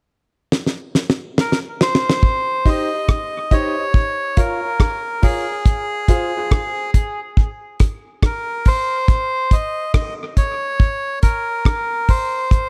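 A dry, fat-snared fill on a damped 70s drum kit opens this heavy, spacious dub reggae excerpt, with tight kick, rim clicks and hi-hat sitting up front. A reedy, breathy melodica carries the melody through tape echo from 1.4 seconds. Smooth, vintage grand piano stabs, also echoed, appear between 2.7 and 6.3 seconds over minor chords, all set in a small room within an echo-heavy mix.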